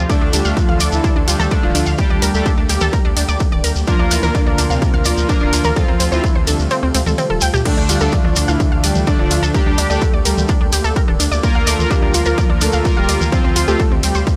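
Cinematic and driving, this melodic techno excerpt at 127 BPM in D minor pulses with sidechain pumping beneath a heavy overdriven kick that drops out from 6.7 to 7.7 seconds around a drum fill, while an overdriven techno kit, a round, deep analog bass, a lush warbling unison pad, bold wave-folded synth brass stabs on cassette tape, bright detuned analog pluck arpeggios, a mellow soft supersaw second line, an expressive vibrato synth lead with tape echo, and a grainy shekere ride over a Dm, Gmadd9/D, Bb/D, Fadd9/D cycle, joined at 10.2 seconds by a very quiet, resonant overtone-sweeping drone, all in a dry, gritty hardware recording.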